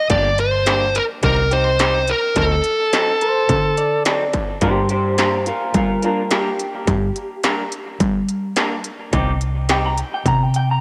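A dark, overdriven lead guitar opens this mournful, smoky soul blues excerpt in G minor, sung out up front over a straight-eighth groove at 106 BPM while the chords move from Gm through Cm to a tense D7b9. Almost at once a twangy, lo-fi electric guitar through a small old amp adds bright, slightly broken-up stabs touched with tape echo. Underneath, a round, punchy, foam-muted fingered bass holds the low end against an industrial drum kit with a distorted kick, clanging snare and crisp hats. The lead melody stops at 4.0 s, and a second small-amp guitar that entered at 3.2 s, compressed and thickened with lush chorus and tape echo, carries a higher line. From 4.6 s a clean electric guitar solo takes over as the harmony settles back on Gm and later turns to Cm. A moderate echo chamber reverb gives the whole mix a lingering, roomy tail.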